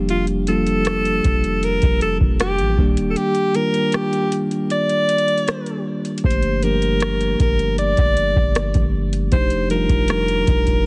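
Sensual and late-night, this short contemporary R&B excerpt moves at an unhurried 78 BPM in G minor, with a straight 4/4 feel. A mellow tine electric piano sits up front with a clean, direct tone, carrying chords that pass from Bb6/F through Ebmaj7 and Gm9 to F13, while a deep, boomy 808-style bass with a sine core, a noise layer and a fast, decaying attack anchors the low end. A clear alto saxophone takes the solo melody in a jazz style, its soft attack, light vibrato and scooped notes trailed by delay. Alongside it, a booming analog drum machine lays down a deep kick, metallic hi-hats and rim clicks, its dry sound roughened by vintage 12-bit sampler grit, and the kick drops out between 3.2 and 6.2 seconds. The whole mix carries light reverb and a heavily compressed, radio-like sound.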